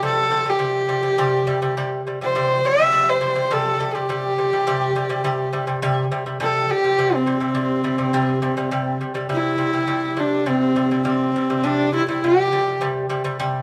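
Mongolian traditional music at 103 BPM in a straight 4/4, this excerpt from a longer piece feels vast and galloping, set in a C gong mode with tuning slightly under concert pitch. A single bowed horsehead fiddle carries the melody up front with a nasal, husky, biting tone, light vibrato and portamento, ending at 12.8 seconds, while a bright, delicate fingerpicked lute with double gut strings plays low arpeggios until 13.6 seconds. The band plays live in one room with moderate stone-room reverb, and the sound carries some lossy compression artefacts as the music moves into a new section at 9.3 seconds.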